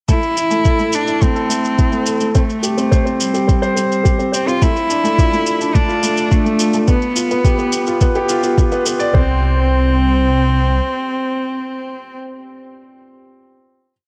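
Luminous and hopeful, this short piano and strings electronica piece moves at 106 BPM in a straight 4/4, building for about nine seconds over Am, C5, F6 and G7 before settling into a held final chord. A soft electronic kick drives a four-on-the-floor pulse up front, joined by a restrained, high-passed shaker, both re-recorded in a small room and dropping out around 9.1 to 9.3 seconds. Beneath them, a deep, rumbling detuned saw bass holds sustained roots with a beating unison tone and sidechain pumping, ending at 10.8 seconds. A dark, mellow baby grand piano plays a 16-step arpeggiated sequence with long sustain and delay, ringing on longest to 13.9 seconds. Over it, a single bowed cello carries arching, motif-based phrases with light vibrato and a nasal, boxy edge, its delayed lines set in a moderate concert hall reverb.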